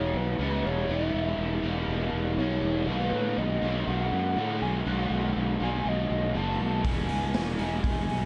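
A crunchy, double-tracked overdriven guitar riff bathed in lush chorus leads this hazy, wistful shoegaze and dream pop excerpt alongside a growly fuzz fingered bass and a soft, round sine lead melody with vibrato and tape echo, as the harmony moves from E6 to B7, before a punchy, gritty garage drum kit with a rolled-off top enters at 6.8 seconds on the return of E6 in a lightly reverberant studio space.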